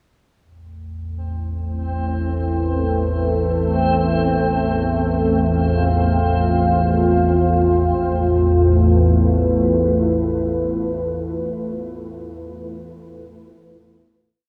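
In free time, this desolate dark ambient drone in A minor opens with a deep, ominous, rumbling drone at 0.8 seconds, warbling under a lush chorus. A moody, detuned pad joins at 1.7 seconds, moving slowly from Am to F/A, and a reversed, dreamy granular texture follows at 1.8 seconds, holding a high note until 7.9 seconds. At that point the drone and pad settle onto a final A5 chord inside a huge, wet reverb.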